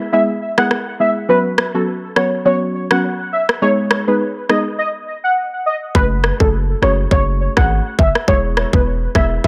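Hypnotic and sultry, this dancehall excerpt opens with a velvety, detuned synth lead carrying the melody through chorus and tape echo over a dark, round pluck pumping under sidechain, while a tight electronic island pop kit of kick and rim click joins at 0.6 seconds and a punchy, hard-hitting 808-style bass drops in at 5.9 seconds as the chords move from E through Bsus2 and G#m to F#madd9, all set in a springy, echo-heavy mix.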